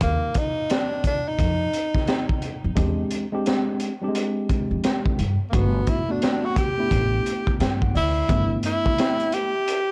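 This smooth, relaxed jazz-hop excerpt opens with a breathy, subtone tenor saxophone carrying the solo melody up front with vibrato, scooped notes and tape echo, over a crunchy breakbeat kit with a punchy kick, high-tuned snare and rolled-off top, and a woody, thumpy pizzicato upright bass. At 87 BPM with a swung 16th-note feel in G major, a worn, slightly out-of-tune tine electric piano joins at 2.8 seconds on accompaniment, playing through its built-in speakers and adding a fill at 7.3 seconds, while the bass drops out at 8.6 seconds. The dry, gritty hardware recording carries light reverb, with tube saturation on the bass and a dark, saturated tone on the drums.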